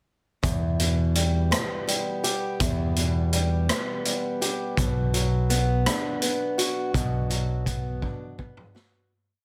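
A growly, amped electric bass sits up front in this brief, brooding piece of quiet-loud alternative rock, tied to the kick drum at 55 BPM in a straight 6/8 and moving from E minor to B minor before it drops out at 8.0 seconds. A fingerpicked acoustic archtop guitar spins arpeggios through the verse, while a saturated, gritty garage kit with a punchy kick and a rolled-off top drives the groove and closes with a fill from 8.0 seconds. A fade begins at 6.9 seconds, and the small-room sound carries a dense, heavily limited modern master that keeps the angsty mood close and raw.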